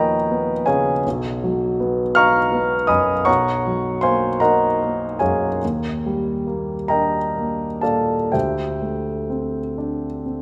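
A solo grand piano opens on a Db9/Eb chord, drifting through Badd9, Gb69/Cb, Ebmaj7 and D9sus4 in a serene, hazy impressionist classical passage, a brief fragment of a longer piece. The playing moves in a slow, rubato 6/8 at roughly 40-56 dotted-quarter beats per minute, spanning B1 to F6 on an instrument tuned to A4 = 438 Hz. The piano sounds warm, intimate and natural, placed up front with long sustain and audible action noise, set in a moderate scoring-stage reverb with a 1.9-second decay.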